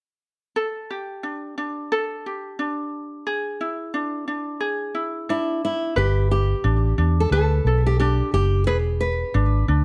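A 4/4 groove with a gentle sixteenth-note swing carries this carefree, heartfelt pop excerpt, opening with a mellow, fingerpicked ukulele playing alone from 0.6 seconds over chords that move from Gsus2 to E7. A bright, classical-toned nylon-string guitar enters at 5.3 seconds with a fingerpicked melody touched by digital delay, and at 6.0 seconds a foam-muted, round and punchy vintage electric bass arrives up front as the harmony shifts to Gadd9. The production is dark and lightly reverberant, and the piece is cut from a longer work.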